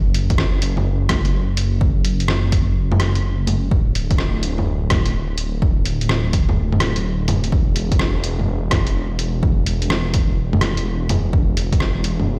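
Future garage at 126 BPM in 4/4, with a 66% swing on the 16ths, this melancholic, ghostly fragment of a longer piece is tuned to A4 = 442 Hz. A menacing, detuned sawtooth bass sits up front from 0.0 seconds, its saturated unison tone evolving between D1 and F#1 and pumping against the sidechain. Around it, a muffled, tape-flavoured, pitched-down sampler kit of bongos, hi-hat and rim click shares the groove with a punchy, overdriven electronic kick, both carrying small room ambience, while the whole mix sounds as if played on a big sound system in a bare stone room.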